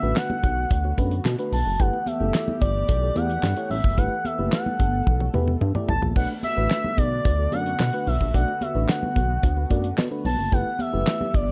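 A straight 4/4 groove at 110 BPM sets this slick, funky slice of early-eighties boogie funk in B minor, cut from a longer piece, with a damped 70s drum kit entering at 0.2 seconds: a tight kick, fat snare, dark cymbals, hi-hat, handclaps, toms and crash, all dry and up front, alongside ringing, high-tuned congas played with soft hands in the background. Underneath, a glossy, retro synth bass built from pulse and sawtooth waves with a filter pluck and chorus sits prominently, spanning F#1 to B2. The harmony moves between Bm7 and G69, carried by a mellow FM electric piano with a round, decaying tone and a faint noise layer, and by a shimmering pulse-width pad of detuned, ring-modulated sustained chords with a slow attack tucked behind the mix. On top, an expressive, evolving synth lead sings the melody between D5 and A5, its smooth sawtooth voice colored by vibrato, a moving notch, chorus and a slapback echo. 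A drum fill from 5.1 to 6.2 seconds marks the return to Bm7, and the whole passage sits in a small room ambience with a dark, warm production.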